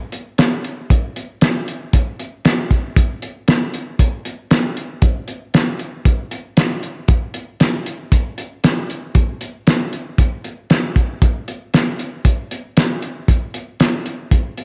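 A straight 4/4 blues groove at 116 BPM comes from a cloth-damped, thuddy acoustic drum kit of hi-hat, kick and snare, its fat snare and tight kick sounding muffled, saturated and lo-fi up front in a small room with a rolled-off top and a moderate spring reverb, giving this short excerpt a gritty, soulful mood.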